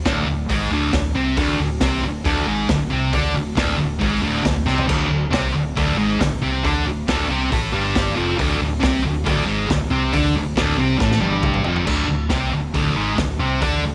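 A small room with light reverb frames this gritty, menacing slice of garage rock, cut from a longer piece and played in a straight four-four feel. Up front sits a thick, bright fuzz guitar, double-tracked and picked, driving a distorted riff that spans the low and middle registers. Beneath it, an overdriven fingered electric bass adds a round, amped low end in the deep register. The acoustic drum kit has a pumping room sound, with a punchy kick, a medium-tuned snare, dark cymbals, hi-hat, crash and toms, all saturated and rolled off at the top. A drum fill lands at 4.7 seconds, and a longer fill from 11.0 to 11.9 seconds leads into a new section that carries the riff to the end.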